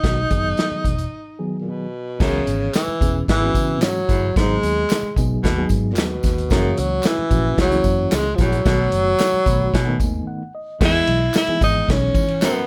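A breathy tenor saxophone carries the melody up front, over a mellow reed electric piano with fast tremolo, a round, foam-muted electric bass and a vintage drum kit with a punchy kick and dark cymbals, in this joyful, uptempo 1960s-style soul excerpt in E major at 112 BPM, where after a break a distant baritone saxophone riff and background tambourine, maracas and handclaps join at 2.2 seconds, a very quiet woody marimba adds a second line from 5.9 seconds, and an electric piano fill leads to the closing Emaj7 at 10.8 seconds under light reverb.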